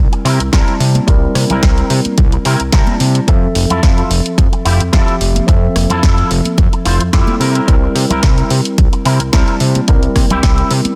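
A punchy, layered electronic kick sits up front in this sunny, groovy nu-disco clip, arriving at 0.5 seconds over a lightly swung sixteenth-note feel in 4/4. Beneath it, a fat, detuned sawtooth bass with tube saturation and an evolving filter sweep holds down the low end with a fast attack and sustained notes, while a house kit adds snare, bright hats and rim clicks. A clean, twangy electric guitar played through an envelope filter picks out a riff, colored by ensemble chorus and delay. A tine electric piano, heard through its built-in speakers, supplies accompaniment with sidechain pumping and its own delay. Congas struck with hard hands sit close and dry in the background from 0.9 seconds, and the harmony moves from C7 to Fmaj7 at 3.3 seconds and back to C7 in a dense, heavily limited mix with little reverb.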